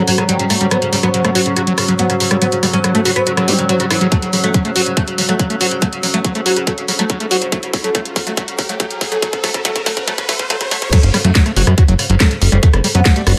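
At 141 BPM in a straight 4/4, this psychedelic trance fragment in F# minor builds for 10.9 seconds, with a squelchy, gritty acid bass riff and a woody, plectrum-plucked oud melody both under filter sweeps, a resonant overtone-sweeping drone and a warbly, nostalgic tape-like pad in the background, and a garage kit with a cracking snare and fill joined by a tight electronic kick at 4.1 seconds and a riser at 6.8 seconds, before the drop at 10.9 seconds brings in a punchy, funky plucky analog bass, while the drone, pad, acid bass and oud pulse with an alien, psychedelic sidechain pump.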